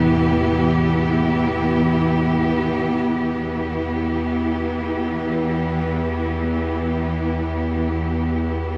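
A dark, woody cello section holds lush sustained chords in free time over a tense, sawtooth-edged bowed-like drone with its own built-in reverb, while barely audible bronze church bells clang in arpeggios until 2.8 seconds, all set in a cavernous cathedral reverb for an ominous, unsettling dark ambient excerpt.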